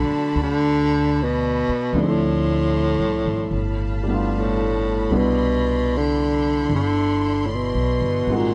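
A dark, lightly reverberant production frames this tender, late-night jazz ballad fragment, gently swung in four. A mellow baritone saxophone carries the melody up front with subtone and vibrato, alongside a polished baby grand piano, a growly pizzicato upright bass and a lush bowed string section sustaining chords. All four parts play throughout the 8.5 seconds as the harmony moves from Bm7 through Dm9 and G9 to Cmaj9.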